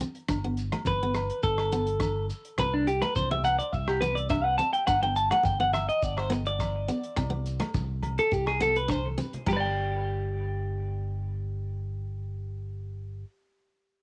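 A straight 4/4 groove drives this sunny highlife guitar band excerpt: a dry, tight-kicked 70s drum kit with crash, hi-hat and rim click, background shekere, ringing agogo bells and very quiet low-tuned congas sit beneath a round, dark fingered electric bass, while a bright, twangy clean electric guitar with tape echo plays arpeggios and a solo up front over a full-bodied picked steel-string acoustic guitar, the kit closing with a fill at 8.9 seconds before bass and lead guitar carry on alone from 9.8 seconds in this lightly reverberant cassette home recording.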